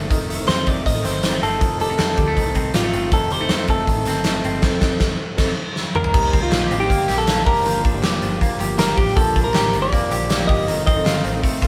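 Jangly indie pop at 159 BPM in 4/4 with a straight feel, this breezy, nostalgic excerpt from a longer piece sounds like a band playing live in one room under moderate studio reverb. A punchy, up-front rock drum kit with a medium-tuned snare, crash, hi-hat and toms drives the music, joined from 0.5 s by very quiet, crisp group handclaps. A dark, foam-muted vintage electric bass sits under a full-bodied fingerpicked steel-string acoustic guitar in the background, while a semi-hollow electric guitar spins compressed, hollow-body arpeggios. A clean electric guitar carries the melody in a warm, fingered tone over chords moving from F7 through Cm7, Gm7 and Bb6. During the band accent and drum fill leading to 6.1 s, a very quiet, mellow vibraphone played with soft mallets enters at 6.0 s with a ringing second line, its slow motor vibrato shimmering above the guitars.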